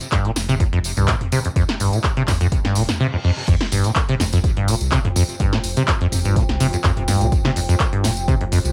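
A squelchy, resonant sawtooth acid bass riff with tube saturation, tape echo and sidechain pumping leads this gritty, driving acid house excerpt, riding over a punchy analog drum machine of crash, handclaps, hi-hat, snare and toms, a tape-warm electronic kick, a jingly, dry tambourine and a deep, round analog bass, while a reverse cymbal at 2.8 s heralds the drop at 3.5 s and a dark, blurred granular cloud pad drifts in behind from 4.3 s, all carrying the light reverb and grain of a home cassette recording.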